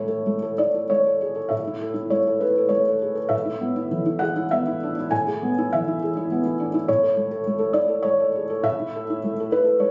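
A felt-muted upright piano plays alone in this short excerpt of neoclassical minimalist music, its mellow, dark tone sitting up front with the thick felt softening every note. The playing moves freely in a rubato three-beat lilt, shifting from A to E over an A bass at 3.3 seconds and settling back on A at 6.9 seconds for an intimate, hopeful mood. Captured on a phone in the room, the sound carries light club reverb and compression.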